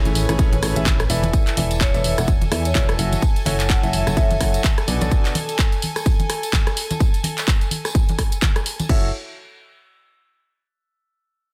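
A tape-warm house kit of handclaps, hi-hat, rim clicks and crash opens this energetic, soulful piano house excerpt, with tambourine and congas sitting in the background, and a punchy, up-front electronic kick enters at 0.4 seconds to drive it. A clear grand piano riff with tape echo and a round, mellow FM bass pump against the kick, under sustained chords from an earthy, close violin section bowed with light vibrato, over chords moving from Amaj7 through E7sus4 and F#m7 to Bm7. A dark, metallic vibraphone melody rings in the background from 1.8 seconds, and the piano and bass return briefly at 8.9 seconds in a dense, heavily limited modern mix.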